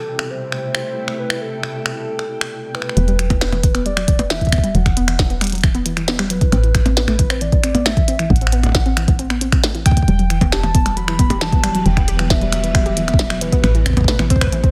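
A straight 4/4 pulse at 135 BPM is set by a glitchy, up-front drum kit of clicky hats, a tiny snare, finger snaps and percussion blips, joined at 3.3 seconds by a deep, tape-warm electronic kick that sits loudest in the mix. This eerie, glitchy IDM in E minor opens with a warbling, nostalgic triangle-and-sawtooth lead carrying the melody with chorus, vibrato and dub echo, over a silky vintage string machine holding pumping sustained chords and a bright, bubbling background texture of random resonant filter steps. At 3.0 seconds the texture falls away and the strings pause, while a woody, round FM bass with a dark, decaying tone and a lo-fi, detuned pluck enter, the pluck spinning mellow arpeggios coloured by ring modulation, a filter sweep, a noise layer and dub echo. The string machine's slow, evolving swell returns at 10.9 seconds beneath the lead and pluck. Chords cycle through Amadd9, Esus2 and Emadd9 inside light reverb and a digital ambience, in a passage cut from a longer piece.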